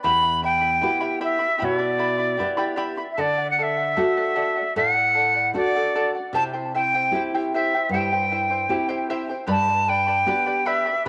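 Earthy and festive, this Andean folk excerpt moves at 76 BPM in E minor through Em, D, C and G, with a bright, reedy cane quena carrying an airy, tongued, vibrato-tinged melody up front through tape echo, over a shimmering fingerpicked charango with double strings and a full-bodied, deep classical nylon-string guitar, all played together from 0.0 to 11.1 seconds in a moderate echo chamber reverb with small room ambience.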